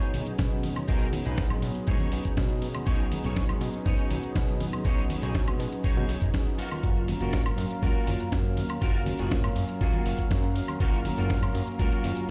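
Heard through a big sound system in a bare stone room, this sunny, feel-good nu-disco excerpt at 121 BPM in F# major moves from B69 to F#maj7 at 6.6 s, with a thumpy, gritty electronic kick and a dusty, compressed sampler-style kit of hi-hat, medium-tuned snare and woodblock, hard-handed congas in the background, a fat, detuned sawtooth bass with tube saturation and a plucky filter, a twangy, slightly broken-up electric guitar riff through ensemble chorus and tape echo, and a mellow, slow-blooming analog pad carrying chorus, tape echo and vintage 12-bit sampler grit.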